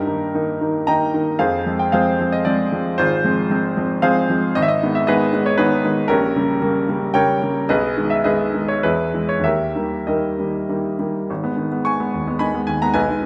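Brooding and bittersweet, this romantic character piece for solo piano unfolds in triple metre with a supple, rubato feel. The grand piano sounds clear and present, placed up front, yet it is wrapped in the wet reverb of a recital hall that lends the tone a lingering bloom. The writing spans from a deep Ab1 in the bass up to C#6 in the treble. The harmony drifts from Eb through F minor colours before settling into a darker G# minor centre from 4.6 s, passes through a shadowy diminished chord, then leans on an E to D# progression that pulls back toward G# minor as a new section opens at 11.3 s. Cut from a longer work, this short passage ends at 13.3 s, just as that new section is getting under way.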